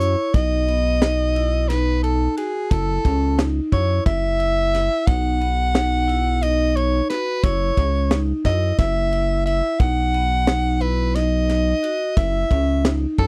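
Set in a straight, uneven 7/8, this progressive instrumental band piece moves with an intricate, tense energy. A tight funk drum kit sits up front, its high-tuned snare and tight kick paired with dark cymbals across hi-hat and ride, all captured with a natural small-room sound. Beneath it, a rubbery square-wave bass bounces with a hollow, resonant, filter-plucked tone, mellow yet sustained and placed close in the mix. A vibraphone struck with medium hard mallets rings out metallic arpeggios in its middle register, while a bright soprano saxophone carries the melody with light vibrato and a pop-style solo voice. The harmony alternates between B and F# chords, and the whole passage has the dry, close feel of a 1970s studio with only light reverb, cut from a longer piece at 13.3 seconds.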